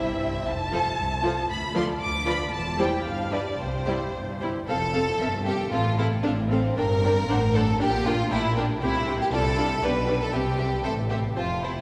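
A full string orchestra opens together in a quick, lively and cheerful classical-period movement in 2/4 at 116 BPM, played with rubato, moving from C major into F major at 4.7 s as this short cut from a longer piece unfolds. The violins carry a soft-attacked, expressive melody over an up-front, focused second violin line and lush, close violas, while intense cellos with a smooth top sit in the background alongside a clear, even double bass. Every section is bowed with vibrato, and a wet cathedral reverb with a 5.5-second decay bathes the ensemble in the resonance of a church or concert hall.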